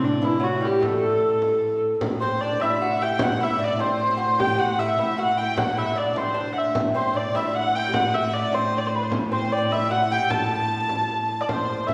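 A driving 6/8 lilt at 101 beats per minute, counted in dotted quarters, carries this mysterious medieval dance in A dorian, tuned to A4 = 439 Hz. A dark, nasal hurdy-gurdy leads the melody up front, its wheel-bowed tone woody and boxy. A fingerpicked lute with gut double strings plays a delicate second line until 11.3 seconds, while a mellow, hollow tenor recorder with an airy chiff sits in the background on another second line. A rich viola da gamba holds a low A drone with light vibrato and a reedy, ringing gut-string tone, and a small, bright frame drum struck with hard hands enters at 0.2 seconds. The ensemble sits in a church or concert hall with a wet stage reverb, and the clip is cut from a longer piece.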